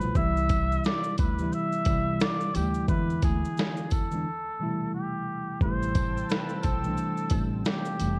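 A cup-muted trumpet carries the melody up front, its veiled, soft tone shaped by vibrato and scooped notes over a worn, slightly out-of-tune tine electric piano with cassette-tape colour, a woody pizzicato upright bass, and a gritty, compressed sampler-style drum kit with a thumpy kick, plus a very quiet, jingly tambourine entering at 0.5 seconds. This hazy, melancholic lo-fi hip hop excerpt swings lazily in 4/4, moving through Cmaj7, E7 and Am7 with a break from 4.2 to 5.6 seconds. At 5.6 seconds a lush, detuned sawtooth pad with chorus enters with a slow attack in the background, and the whole recording sits in light reverb with a cassette-tape haze.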